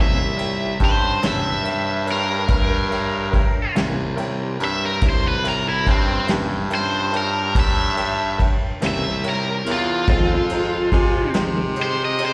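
Heard live through a venue's PA with light recital-hall reverb, this smoky, brooding slow blues in 12/8 at 47 BPM spotlights a cranked stack guitar soloing up front, its picked lines overdriven and touched with slapback echo over a C7b9 chord that moves to Fm7 at 10.1 seconds. A bright baritone saxophone carries the bass with vibrato, while a woody, polished upright piano and a clean, fingered semi-hollow guitar with tremolo sit in the background, both carrying slapback echo, and the hollow-body guitar drops out at 11.6 seconds. Vintage brush drums enter at 0.4 seconds with a punchy kick, a medium-tuned snare and ride cymbal, sounding warm and small-room with a rolled-off top.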